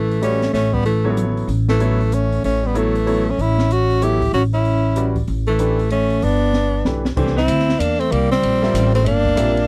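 A swung 3/4 pulse at 190 BPM drives this searching, spiritual modal jazz excerpt in A mixolydian, with a woody pizzicato upright bass sitting up front and an open drum kit of dark cymbals, a high-tuned snare and a punchy kick. A breathy, close-miked tenor saxophone carries the melody with vibrato and subtone, while a forceful alto saxophone with a smooth top plays a second line and a clear, natural grand piano accompanies over chords moving from A to G69. A drum fill from 6.5 to 7.2 seconds leads into a new section on C9, all captured in a dry, close 1970s-style studio sound.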